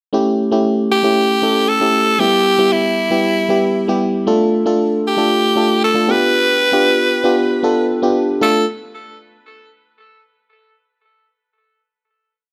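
A moderate scoring-stage reverb with small-room ambience surrounds this short, dramatic and moody pop piece in D dorian at 116 BPM, moving through A7, Em, Dm and G7 before settling on a final Dm at 8.4 seconds. A glassy, bell-like FM electric piano with a vintage warble, a noise layer and chorus plays syncopated, close-voiced chords up front from the start. From 0.9 seconds a raspy, gritty tenor saxophone with vibrato and tape echo delivers a punchy, forceful solo built from call-phrase motifs.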